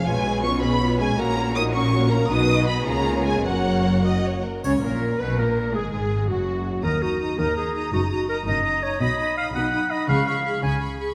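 Set in a reverberant concert hall, this fragment of a fast, dramatic and restless romantic orchestral movement in F# major moves at 109 BPM in a rubato 6/8. Lush, vibrato-rich violins carry the melody over a second violin line and a smooth, even viola accompaniment, with expressive cellos and woody double basses forming the bass. Mellow French horns hold background chords until 4.4 s. At 4.6 s a soft-attacked solo clarinet takes up a second line alongside a brief, dry triangle, and timpani enter at 10.1 s.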